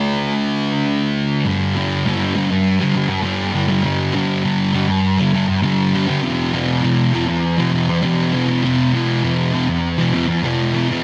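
A dense, heavily limited modern master with light reverb frames this blissful, wistful rock excerpt at 100 BPM in a straight 4/4. A single double-tracked fuzz guitar sits up front for the whole 11 seconds, its distorted, picked tone colored by a subtle chorus and slapback echo as it plays between F2 and D4. The guitar opens on D5, moves to G5 at 1.5 seconds and settles on F5 at 6.2 seconds.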